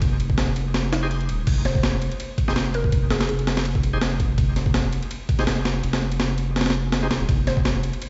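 A gritty, thumpy sampler-style breakbeat kit of kick, snare, ride and crash sits up front alongside a deep, thick saturated sub bass in this frenetic, atmospheric drum and bass and jungle excerpt, both running nearly its full 8 seconds. From 1.0 s a bright, shouting tonewheel organ stabs in the background through overdrive, a slow rotary speaker and dub echo. A woody, round mallet-like FM pluck with chorus and dub echo carries a short melody from 1.7 to 3.3 s and briefly returns at 7.5 s, all heard as if through a big sound system in a bare room with vinyl crackle and a dulled top end.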